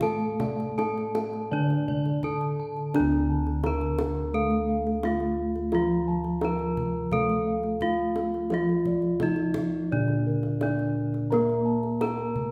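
A bright bronze metallophone, struck with a horn mallet and sitting up front, carries the melody between Bb3 and Bb4 in this shimmering, hypnotic Javanese gamelan excerpt in D pelog, moving at a straight 86 BPM in 4/4. Beneath it, a second metallophone played with padded disc mallets gives a mellow, soft accompaniment in the lower register, its paired tuning producing airy, beating shimmer. Bossed gongs with a vintage, band-limited sound spin arpeggios higher up, while a deeper set of bossed gongs, round, warm and a little boxy under padded beaters, holds the bass from D2. A higher metallophone adds ringing, shimmering arpeggios of its own until 2.9 s, when the music moves into a new section, and a kendang played with soft hands keeps a tight, compressed, slightly saturated pulse throughout. The whole ensemble rings out in a reverberant recital hall, lending the metallic tones a long, resonant halo across the 12.5-second fragment cut from a longer piece.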